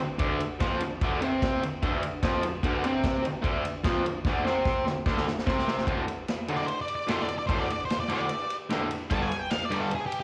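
A bright, overdriven garage guitar riff leads this raw, swaggering garage rock cut from a longer piece, picked and double-tracked up front with overdrive and slapback echo across a range from D2 to C4. It moves at 148 BPM in a straight 4/4, opening on a Dm7 before shifting to D5 at 5.9 seconds and G5 at 9.1 seconds. A vintage acoustic drum kit of kick, snare and ride cymbal enters at 0.2 seconds, its punchy kick, medium-tuned snare and dark, rolled-off cymbals sitting mid-forward, with a drum fill leading into the second section. At 6.6 seconds an octave-fuzz lead guitar cuts in for a solo, its dark, picked tone carrying distortion and digital delay as it plays from G4 to A5. The whole performance sounds like a live gig heard through the venue's PA, wrapped in light club reverb.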